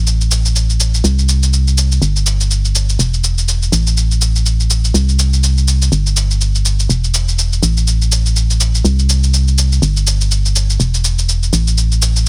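An organ-like FM bass, hollow, dark and percussive with a fast attack and decaying tone, sits up front from the start of this joyful, euphoric piano house clip at 123 BPM with a 16th-note swing, joined at 0.1 seconds by an electronic, analog shaker re-recorded in a small room, all dry and heavily compressed like a radio broadcast.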